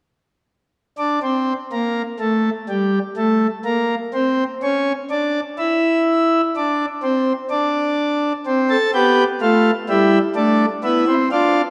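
Moving in a straight 4/4 at a stately 62 BPM, this contemplative, serious excerpt from a baroque-style fugue in D minor features a pipe organ principal chorus playing solo from 1.0 to 11.6 seconds, its full, baroque voicing sitting up front within a range of G3 to A4. The harmony opens unaccompanied by chords before settling on A minor and then D minor over an A bass near the end, all bathed in the long, wet reverb of a church.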